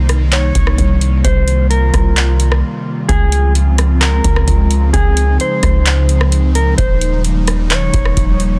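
A half-time 4/4 groove at 130 BPM from a booming analog drum machine, with deep kick, metallic hi-hats, handclaps and rim clicks, drives this hazy, ethereal hip hop cloud-rap fragment, as a boomy, up-front 808-style bass sits beneath an airy, breathy pad with chorus and sidechain pumping and a dark, clean electric guitar melody softened by a low-pass filter and digital delay, the harmony moving from Cm7 to Dbmaj7 at 3.1 seconds and Eb9 at 6.8 seconds after a brief break at 2.6 seconds, inside a dense, heavily limited mix with digital ambience.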